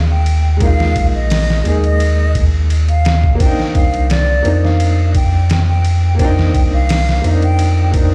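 A breathy concert flute opens this hypnotic, cinematic trip hop excerpt over an upright piano and a deep sub bass, with the drums arriving at 0.3 seconds. The tempo sits at 86 BPM in a straight 4/4, and the harmony moves from Bb7sus4 to Cm9 at 3.4 seconds. The flute carries the melody between D5 and G5, expressive and tongued, with vibrato, lifted highs and a tape echo trailing its notes. The warm, woody piano accompanies in a middle register with tremolo and its own tape echo, while the round, sine-like sub bass sits up front with a fast attack and sustained notes. The sampler-style kit of kick, snare, hi-hat and ride sounds compressed, pitched down and gritty, with a thumpy kick, a medium-tuned snare and a tape-warm character pushed forward in the mix. The whole excerpt has the sound of a big system playing in a bare room, with a large studio reverb around it.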